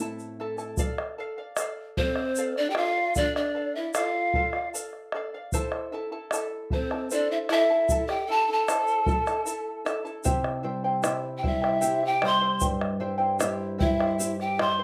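Andean folk in 3/4 at 76 BPM, this wistful, melancholic passage from a longer piece moves through Am, Dm and C at an unhurried pace. Fingerpicked charango on double strings provides a shimmering bed throughout, supported by a round, vintage-sounding bombo placed up front and a grainy tube shaker. The nylon-string guitar adds a dark, thumb-plucked low end, heard briefly at the start and returning at 10.3 seconds as the harmony shifts to C. From 2.0 seconds, a mellow wooden pan flute carries the upper melody with vibrato, a crisp chiff and an unsteady quality, while a breathy, reedy bamboo pan flute traces a lower second line, close-miked and tongued. Both flutes sit in plate reverb within a wet studio ambience, giving this rough home-demo mix an airy, melancholy glow.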